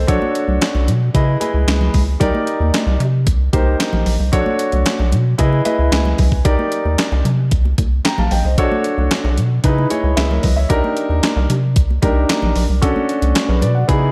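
Soaked in a lush, dreamy hall reverb, this late-night, danceable slice of early-eighties boogie funk rides on a rubbery, hollow square-wave bass and a thumpy, overdriven 12-bit drum machine with handclaps, hi-hat and snare up front, while a deep-toned concert grand piano comps through drifting minor-ninth chords and adds fills at 5.4 and 9.6 seconds, and bright, thin-skinned congas sit in the background.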